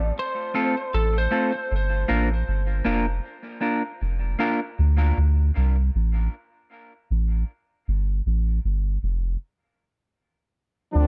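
A lightly driven lead guitar opens this meditative, deep reggae excerpt with a brief, bright and twangy phrase soaked in tape echo, gone by 1.7 seconds, while a soft dub sub bass sits round and up front underneath, holding the low end throughout at a relaxed 78 BPM with a swung sixteenth feel. A clean electric guitar enters at 0.5 seconds, fingered and up front, adding its own tape-echoed accompaniment before falling away. The harmony moves from a rootless Dm7 to Gm7, then to a bare D5 and an open Fadd9, giving the break a spacious, unresolved quality. The bass carries on alone with its triangle- and square-wave tone, sustained notes and fast attack, until a punchy horn section with vibrato and octave doubling appears at 10.9 seconds, sounding distant and roomy. Light reverb and small room ambience frame the mix, and the piece is clearly cut from a longer performance.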